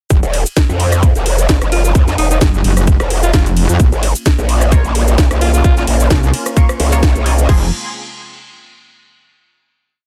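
A swung four-on-the-floor groove from a tight, up-front electronic kick and an overdriven house drum kit with a cracking snare drives this gritty, aggressive bass house drop, where a distorted metallic wobble bass and a bright, growling, formant-filtered bass churn under sidechain pumping, a raspy, close-miked alto saxophone cuts in with short phrases at 1.7 seconds, and from 3.8 seconds an evolving sawtooth pad hovers in the background before nasal, band-passed chord stabs with phaser and delay join, ahead of a final chord at 7.5 seconds.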